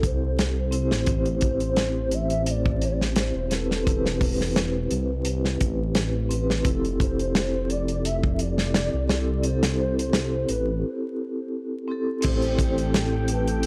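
Trip hop with a dark, hypnotic pull, this swung fragment of a longer piece sets a breathy, gliding sine lead with ensemble chorus and tape echo over mellow soft-mallet vibraphone, a deep, rumbling detuned saw bass with tube saturation, and a punchy, up-front studio drum kit with bright cymbals, all in a dry, gritty small room flecked with vinyl crackle, before a short break at 10.8 seconds gives way to full-bodied string-machine cellos entering at 12.3 seconds.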